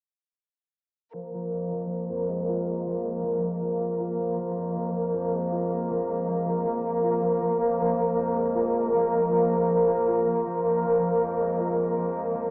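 At 79 BPM in 4/4, with a light 53% swing on the sixteenths, this smoky, cinematic trip hop fragment, cut from a longer piece, settles onto a single Bb5/F chord. From 1.1 seconds a muted chamber violin section holds sustained chords up front, its con sordino tone dark and veiled, bowed with vibrato, soft attacks and a smooth top. Alongside it from the same moment, a concert harp plays thumb-plucked arpeggios in its lower register, acoustic and ringing, passed through a low-pass filter and digital delay, with a filter sweep running across its part. At 2.4 seconds a very quiet backwards swelling texture enters alongside them, a reversed, detuned, granular triangle-wave pad with a long release and its own built-in reverb that gives it a dreamy haze. A moderate plate reverb with a 3.6-second tail surrounds the mix, while a further filter sweep, a low-pass filter and a small-speaker character give it the rough feel of a home demo through to 12.5 seconds.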